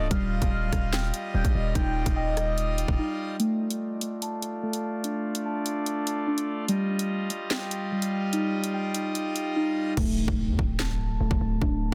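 Muted, felt-like synth keys carry dark, intimate arpeggios up front through this tense, cold drill excerpt at 146 BPM in a half-time feel and D phrygian, over a majestic full pipe organ holding sustained chords and a velvety sawtooth lead with vibrato that sings a second line until 3.4 seconds. A hard-hitting 808-style bass punches with a heavy, decaying sine tone at the start and returns at 10.0 seconds, while the electronic drill kit pairs a hard-clipped kick with a sharp snare, handclaps, rim clicks and crash, its bright hi-hats falling silent in the closing section as a very quiet impact sounds. A filter sweep runs through the middle, and the dense, heavily limited master sits in a digital ambience.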